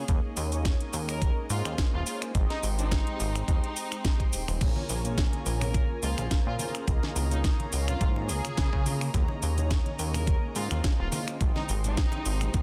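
A knocking, overdriven electronic kick drives this cosmic, sensual nu-disco excerpt at 106 BPM in 4/4 with lightly swung sixteenths, alongside a house kit with a cracking snare, metallic hats, cabasa, finger snaps and crash cymbal, plus very quiet, distant congas from 4.6 s. Up front, a glossy, nasal chorused synth bass holds the low end beneath a mellow synth brass part that is detuned and dark with vintage 12-bit grit and sidechain pumping. Soft, sul tasto chamber strings hold pumping chords in the background while a clear violin section carries the delayed melody over Eb7sus4, Abmaj7, Bbm7 and Db6, all in a dry, dense, heavily limited mix.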